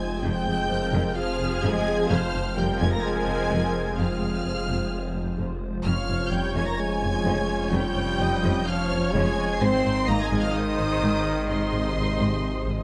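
A straight 4/4 pulse at 128 BPM drives this brooding, relentless cinematic cue in F minor, a hybrid orchestral and electronic film score cut from a longer piece. High violins carry the melody with soft-attack, expressive vibrato, while a second violin section plays a close, even line beneath and the violas add intense, bowed accompaniment. A mellow French horn section, among the most prominent parts, holds sustained chords with trombones tucked behind, and a hollow, flute-like pad warbles very quietly underneath. At the bottom, a thick, swirling detuned saw bass, saturated and run through a phaser, shares the low end with bowed double basses and cellos that enter at 0.2 s and sit in the background. The harmony moves from Fm to Db over F and then to Ab, and a moderate scoring-stage reverb gives the strings a lush bloom.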